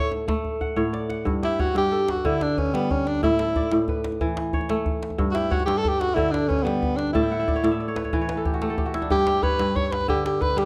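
A warm, close-miked tenor saxophone opens with a jazz-style solo carrying vibrato and a soft attack, over ringing, crisp fingerpicked kora arpeggios, while a deep, dry djembe played with hard hands adds a fill from 0.4 seconds. This flowing, warm excerpt of West African string and xylophone music moves at 122 BPM in a straight 12/8, in G lydian, swaying between A and G chords. The kora steps forward with a fill at 7.1 seconds, and a dark production sets all three parts in a moderate recital-hall reverb.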